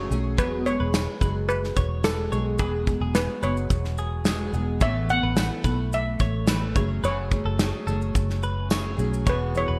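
Acoustic pop with a sunny, heartfelt mood, moving at 108 BPM in a straight 4/4 feel in E major, cut from a longer piece. A shimmering, metallic lead steel pan, struck with hard rubber sticks and treated with delay, carries the melody from G#4 to F#5. Beneath it, a double-tracked, full-bodied jumbo steel-string acoustic guitar is picked with audible finger squeak, while a clean, compressed electric guitar, recorded direct with subtle chorus and delay, adds arpeggios between G#4 and C#5. A round, foam-muted vintage electric bass sits up front, and a natural country drum kit with a punchy kick, medium-tuned snare and shaker is also up front, dressed in gated reverb. A jingly tambourine sits close and dry in the background from 0.9 to 8.8 seconds. The harmony moves from Eadd9 through Asus2 and F#madd9 back to Eadd9, all within a small room ambience and a bright 1980s-style digital production with some lossy compression artefacts.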